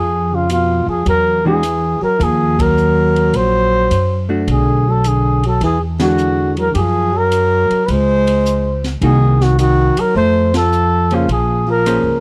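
A swung 4/4 groove carries this short cut from a longer small-group jazz piece, with a cool, late-night mood rooted in swing and bop. A breathy trumpet leads the melody up front, its dark, whispered tone marked by scooped notes, vibrato and soft attacks. Beneath it a mellow baritone saxophone plays a second line in a close-miked subtone with light vibrato, while a pizzicato upright bass with steel strings sits forward in the mix with a woody, warm sound. The acoustic drum kit comes in at 0.5 seconds, set back in a small room, with dark ride cymbals, hi-hat, a high-tuned snare and a boomy kick, and a clean, picked electric hollow-body guitar adds shadowy accompaniment from 1.5 seconds. The band hits accents together over a restless chord progression that opens on a diminished chord, all captured in a dry, close 1970s-style studio sound.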